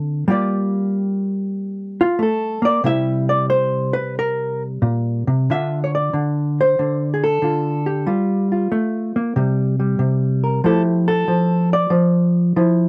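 A dry, close recording with a modest booth ambience frames this cool, swinging solo jazz excerpt, where an up-front hollow-body electric guitar, dark, clean and compressed, plays fingered lines with a loose rubato feel over chords moving from Gm7 and C7 into Dm, then on to Fmaj9 by 10.6 seconds.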